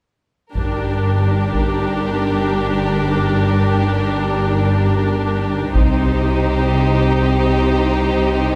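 This cinematic, epic orchestral film score excerpt is heroic and dark, built on a full bowed string section that sustains from 0.6 to 8.6 seconds. Up top, a distant, shadowy violin section carries the melody while a second, closer violin line with a soft attack holds beneath it. A rich, smooth viola section fills the accompaniment, and a close cello section and a warm double bass section anchor the low end, all playing lush with vibrato. A taiko ensemble struck with heavy sticks booms from afar in a large room, first at the opening and again at 5.7 seconds, when the harmony moves from Gm to Cm. Light reverb gives the whole a spacious, brooding grandeur.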